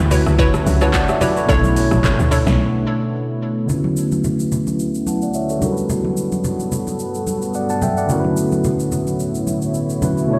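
Amapiano at 109 BPM in D major with a relaxed, swung 16th-note feel, where a clean tine electric piano sits up front over a moody, detuned ambient pad with chorus and sidechain pumping, while a hollow, bouncy square pluck and a woody, punchy log drum bass drop out at 2.6 s. Underneath, an overdriven deep house drum kit with a deep kick, punchy snare and metallic hats plays alongside close, ringing congas played with soft hands, and a filter sweep runs from 3.7 s, all heard as if through a big sound system in a bare stone room.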